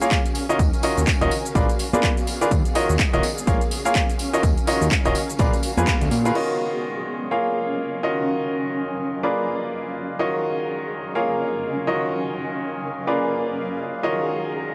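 A swung sixteenth-note groove in four drives this bittersweet, soulful piano house excerpt. A punchy, overdriven electronic kick sits up front, with a layered house kit of crash, handclaps, metallic hi-hats and shaker behind it, both re-recorded in a large room. Soft-handed tambourine and congas ring quietly in the background, while a fat, detuned sawtooth bass with a filter sweep pumps under sidechain compression. A brilliant, vintage grand piano plays the riff over minor ninth and dominant chords, also pumping and trailed by analog delay, as a cloudy granular pad drifts beneath in its own reverb. After a band accent at 5.9 seconds, the drums, percussion and bass fall away by 6.5 seconds, leaving the piano and the evolving, mellow pad to carry the second section alone, all with a dry, gritty cassette-tape character and light reverb.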